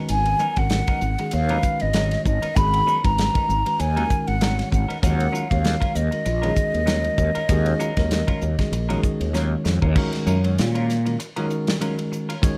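A light reverb gives this short cut from a longer electric jazz fusion piece a close, polished sound, with the flute, bass and drums sitting up front. It moves at 97 BPM in 4/4 in Eb minor, with a sixteenth-note swing that keeps the driving, slick mood loose. A breathy, mellow concert flute carries the melody high in its range, tongued and shaded with vibrato, and set in plate reverb until 9.3 seconds. Beneath it, a bell-like tine electric piano plays clean accompaniment over Abm9 and Ebm9 harmony. A semi-hollow electric guitar adds compressed, fingered stabs with subtle chorus, set lower in the mix. A modern studio drum kit with a punchy kick, medium-tuned snare and bright cymbals drives the groove, and a growly fretless bass with analog chorus holds the low end, then takes a solo from 10.0 seconds after a drum fill.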